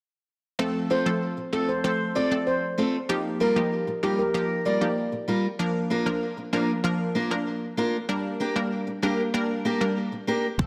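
A shimmering, airy steel pan carries the melody with delay from 0.9 to 4.8 seconds in this hypnotic, tough dancehall excerpt at 96 BPM in G minor, set over a bright, detuned analog pluck with chorus and a fingerpicked steel-string acoustic guitar playing delayed arpeggios through F, Ebadd9, Bb and Gm, before an overdriven, deep electronic kick and a dark, round fretless electric bass arrive at 10.6 seconds, all in moderate plate reverb with a dense, heavily limited modern master.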